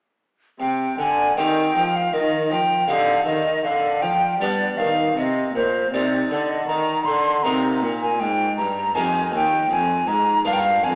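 Grave and introspective, this baroque-style sonata movement with continuo unfolds in C minor at a measured 79 BPM in a straight 4/4, heard here as a short cut from a longer piece. A concert flute carries the melody between C5 and C6, its tone pure and hollow with tongued notes and vibrato, sitting up front as if close-miked. Beneath it, a Flemish-style harpsichord supplies a full, brilliant plucked accompaniment on three sets of strings, while a single bowed cello holds the bass line with a smooth, even sound and its own vibrato. All three parts play together from 0.6 s to 11.0 s, moving through C minor, a G7 over D, back to C minor, then E-flat major and a B-flat seventh over F. The ensemble is heard from further back in a reverberant recital hall, and the whole recording has the narrow, boxy color of an AM radio broadcast.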